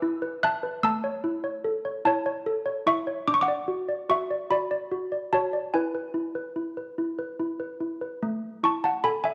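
A dark, mellow sound sits in moderate recital-hall reverb, with malleted handbells placed up front as the sole voice in this short fragment of a dreamy, tender classical lullaby in a gently rocking 6/8. The bells ring with a bell-like, airy tone from medium clappers, each note damped and short, moving through harmonies of E/G#, A, D and E before settling onto A5 at 8.2 seconds. The part spans a broad range, from low bells up to high ones, and the fragment ends at 9.3 seconds.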